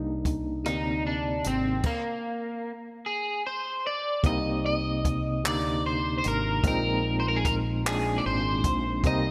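Slow six-eight R&B in C minor at 50 BPM, this sultry, yearning fragment is cut from a longer piece and wrapped in a lush hall reverb with a bright 1980s-style digital sheen. A barky tine electric piano, lightly overdriven and shimmering with medium tremolo through a combo amp, lays down the accompaniment from the start, joined by a round, dark fretless electric bass touched with subtle chorus. A compact cocktail drum kit enters at 0.3 seconds, punchy in the kick and dark in the cymbals, mixing hi-hat, rim click, handclaps and crash under a gated reverb. At 0.7 seconds a twangy, picked electric guitar at the edge of break-up takes the melody up front, its tone thickened by analog chorus. The harmony rests on Cm9, drops away to an open, chordless stretch at 1.8 seconds, and returns to Cm9 at 4.2 seconds as a new section begins. In the final moments, a very quiet, smooth tonewheel organ on a slow rotary speaker slips in with sustained chords at 9.0 seconds.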